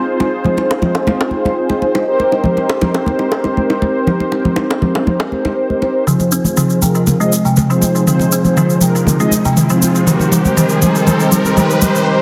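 Earthy and spiritual, this afro house excerpt opens with dark, detuned synth brass stabs under a filter sweep over tight bongos and damped, soft-handed congas, then at 6.1 seconds a build-up begins as a woody, ringing kalimba arpeggio comes up front with a barely audible round sub bass, overdriven electronic toms playing a fill in the background and a grainy egg shaker, while an electronic riser rises from 8.9 seconds, all set in small room ambience under a dense, heavily limited master.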